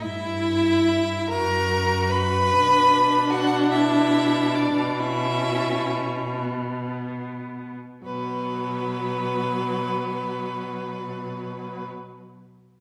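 This brief passage from a slow romantic movement for string quartet opens with all four bowed players sounding together in B minor, moving in 6/8 at roughly 35-51 BPM with a flexible, rubato feel. The mood is melancholic and solemn. The first violin carries the melody up front with a clear, focused vibrato tone that still sounds distant, while the second violin sings a rich, smooth-topped second line beneath it. The viola supplies a clear, focused accompaniment, and the cello anchors the bass with a rich, focused vibrato and a smooth top. The tempo slows from 1.3 to 8.0 seconds as the harmony passes through F# to B minor, before a new section begins at 8.0 seconds on a bare B chord. The quartet is heard from further back in a recital hall, wrapped in a generous, reverberant ambience.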